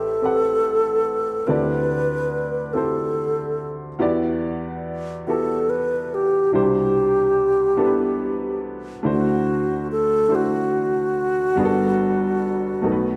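An up-front, close-miked alto flute with a wooden head, bright, reedy and airy with vibrato and tongued notes, carries the hopeful, jubilant melody of this slow gospel excerpt in 6/8 at 48 BPM, over a woody, smooth, vintage-sounding upright piano moving through lush ninth chords from Am9 to Gmaj9, all set in the wet glow of a recital hall with a dark production.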